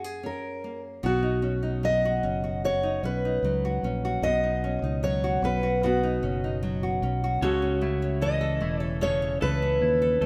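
Opening on a fingerpicked steel-string acoustic guitar carrying a full-bodied, squeaky melody over classical nylon-string accompaniment, this carefree, sunny acoustic pop excerpt in B major at 75 BPM adds an up-front fingered electric bass at 1.0 s and a bright, twangy, compressed twelve-string electric guitar playing arpeggios from 7.4 s, all set in a moderate plate reverb.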